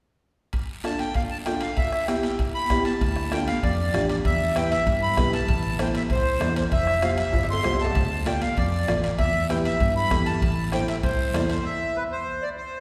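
A soft-beatered bombo, a raspy, close guiro and ringing metal-shell timbales open this driving, fiery cumbia fragment. High-tuned congas struck with hard hands follow from a distance, along with a mellow, woody upright piano and an up-front, reedy accordion that carries the melody with a slow beating shimmer. A round, punchy fingered electric bass arrives at 3.0 s, and after a drum fill near 7.3 s the band stops at 11.7 s, leaving the accordion sounding until 12.8 s in the long wash of a concert hall.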